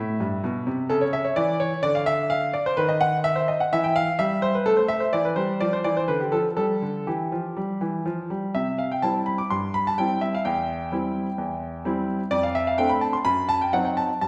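Playful and cheerful, this short cut from a longer classical-period piano sonatina moves with a straight, steady pulse in 4/4. A clear baby grand piano plays solo throughout its 14.3 seconds, ranging from E2 up to D6. The instrument sounds intimate, natural and up front, with the mechanical action of the keys audible beneath the notes. A recital hall reverb gives the sound a wet, resonant bloom, as though captured in a church or concert hall. The opening section runs until 8.6 seconds, where a second section begins on a return to C and closes on a diminished chord that leaves the phrase hanging.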